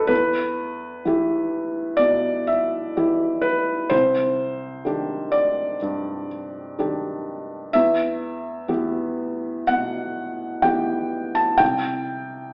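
Reflective and intimate, this short passage from a longer neoclassical minimalist piano piece unfolds in a loose, rubato 4/4 on a solo felt-muted upright piano. The piano sits up front with a soft, mellow tone and audible action noise, moving between E minor and C-based harmonies, including a Cmadd9 at 3.9 seconds and a bare C5 at 11.6 seconds. A moderate hall reverb lends the playing a sense of space, while a narrow, AM-radio quality colours the overall sound.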